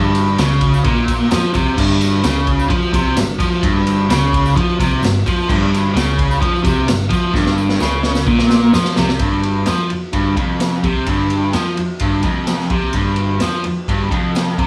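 Garage rock with a menacing, gritty mood, this piece moves at a straight 129 BPM in 4/4. A biting, overdriven electric guitar, double-tracked, picked and up front, carries the riff over a single minor chord. Beneath it, a hollow-body short-scale electric bass, picked, amped and overdriven, sounds dark, round and punchy. The raw garage drum kit is acoustic and placed in a small, pumping room, with dark cymbals, a medium-tuned snare, a punchy kick, and a saturated tone with a rolled-off top; crash, ride, snare and kick all feature. A jingly, very quiet tambourine sits close in the background, and a moderate studio reverb gives the ensemble some room. A drum fill runs from 7.3 to 9.2 seconds, after which the chord drops away for the closing stretch.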